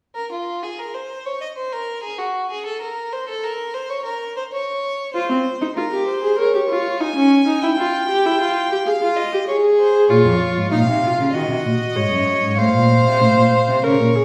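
Heard from further back in a recital hall with a wet 1.3-second reverb, this serious, driving baroque-style fugue for string quartet moves at 96 BPM in a straight 4/4, tuned to A4 = 439 Hz, and is cut from a longer piece. A single bowed violin opens the fugue at 0.1 seconds with a rich, smooth, even tone and vibrato, and a close, full-bodied viola joins at 5.1 seconds as the harmony settles into F minor and B-flat minor. A warm, expressive cello enters on the bass line at 10.1 seconds, colouring its notes with vibrato and portamento as the chords pass through E-flat minor to F over A.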